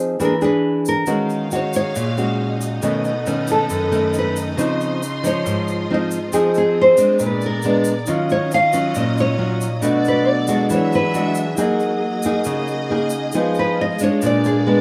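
Sophisticated and relaxed, this bossa nova excerpt at 137 BPM sets a dark, fingerpicked nylon-string guitar melody over a second nylon-string guitar's accompaniment, up front with finger squeak, and a grainy egg shaker, while a lush, bowed string section with soft-attack vibrato enters at 1.1 seconds and a metallic, ringing vibraphone joins in the background at 8.0 seconds, all moving through rich extended chords such as Ebm11, Dbmaj9 and Bb7b9 in light reverb.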